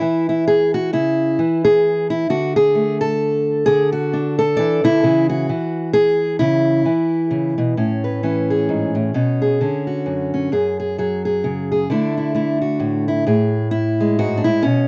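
A fingerpicked steel-string acoustic guitar plays alone from the start, setting a hopeful folk mood at 131 BPM in a swung 3/4, in A major, tuned a touch low to A4 = 438 Hz. Its warm, concert-style tone sits up front, ranging from F#2 to D5 as the harmony moves from C#m and D into Amaj7 at 7.8 seconds, then through Bmadd9, F#sus2 and Dsus2, before settling on an A5 at 13.3 seconds. The sound is dry and close, like a 1970s studio recording, and this brief passage is cut from a longer piece.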